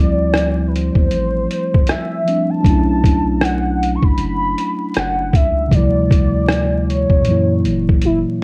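Lo-fi hip hop at 78 BPM with a lazy 16th-note swing, this melancholic, nostalgic fragment from a longer piece drifts through Dm11, Bm11 and F#7 chords under light reverb, worn cassette warble and vinyl crackle. A mellow, clean tine electric piano sits up front with a filtered tape tint, while a velvety, detuned synth lead with chorus and portamento carries the melody over a round, deep dub sub bass with transformer saturation. From 0.3 seconds a gritty, pitched-down sampler-style trip hop kit of thumpy kick, hi-hat and rim click sits loudest in the mix, closing with a drum fill at 8.0 seconds.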